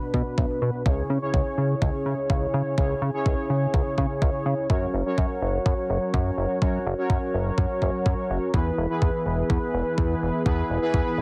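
A heavily compressed, radio-like sound with light reverb frames this short, danceable italo disco cut, taken from a longer piece and running at 125 BPM with a melodramatic edge over chords moving from Bm through C#m and F# to E. Up front, bold, fat analog synth brass plays detuned sawtooth stabs with chorus, delay and a filter sweep, while a glossy, nasal chorused synth bass built on a pulse wave holds the low end. A thumpy, sampler-style electronic kick drum, re-recorded in a small room, drives the straight 4/4 pulse from 0.1 to 11.0 seconds.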